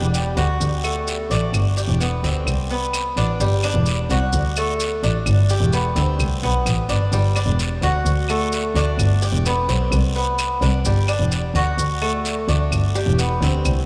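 A dark, bowed double bass sits up front with a soft, smooth, floating tone beneath a metallic, picked Cuban tres playing double-string arpeggios, while raspy guiro, grainy maracas and woody claves (entering at 0.8 s) keep a danceable, warm Cuban son and guajira groove at 129 BPM in G major, all bathed in the long echo of a vast, cathedral-like space in this excerpt cut from a longer piece.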